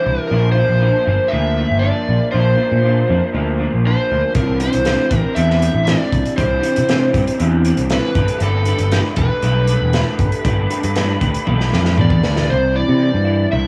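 An up-front overdriven slide guitar carries the melody through dub echo in this hypnotic, trippy psychedelic rock excerpt at 118 BPM in C mixolydian, over a twangy, lo-fi electric guitar riff colored by flanger and dub echo and a punchy, growling picked bass, while a dark, gritty breakbeat kit with a tight kick enters at 4.3 seconds and rolls through a drum fill at 11.5 seconds, all set in an echo-heavy mix with spring reverb as the chords move from Bb through Cadd9 and Gadd9.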